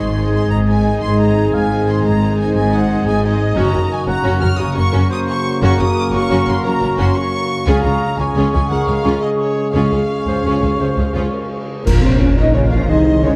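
Lush, focused violins carry a soaring melody in this heroic adventure-film score at 117 BPM in 12/8, over a distant second violin line, airy flutes, a mellow solo cor anglais and a very quiet clarinet, with intense violas accompanying, background French horns and soft-attack trombones holding chords, a ringing harp playing arpeggios, and woody double basses and smooth cellos on the bass, as dark cymbals and bass drum enter at 7.7 s and a tuba joins for a band accent at 11.9 s while the chords move from Ab through Gb and Db to Bbm, all in a wet scoring-stage reverb.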